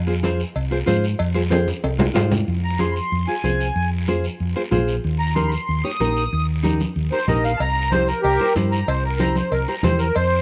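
A rough home-demo mix with light reverb and a small-room ambience frames this driving, danceable cumbia in F minor at 187 BPM, a short cut from a longer piece. A dark, round hollow-body electric bass sits up front, while a full-bodied nylon-string guitar is fingerpicked with audible finger squeak over a chord path that runs from Fm to Eb to C7. Soft-handed congas ring in the background, a raspy guiro scrapes along, and close, dry metal-shell cowbell and timbales play at the start and return at 7.6 seconds. A drum fill from 1.5 seconds leads into the second section, where a sweet, reedy accordion with light tremolo tuning takes an up-front solo from 2.6 seconds to the end.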